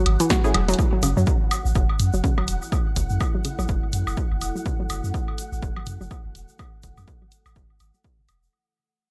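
Minimal techno at 124 BPM in F# minor, this clinical yet quirky fragment is cut from a longer piece and moves with a 16th-note swing, resting on an F#7(no3) chord before settling on F#m7 at 0.8 seconds, where a fade-out begins. A dry, up-front electronic kick anchors the groove alongside a punchy analog drum machine supplying hi-hat and snare, while a mellow sine sub bass with a pitch-drop attack pumps against the sidechain. A hollow, bouncy square-wave pluck carries the riff, detuned and coloured by chorus, phaser, cassette tape and digital delay, and a muted sawtooth dub chord stab sounds briefly in the background with chorus and tape echo. Woodblock and congas, tape-tinged and re-recorded in a small room, sit with tape echo beside a bright, saturated tube shaker. A faint flickering, grainy triangle texture hovers high with built-in reverb from the start, and a deep, moody sawtooth pad with a moving notch and sub octave joins at 2.6 seconds, all wrapped in light reverb.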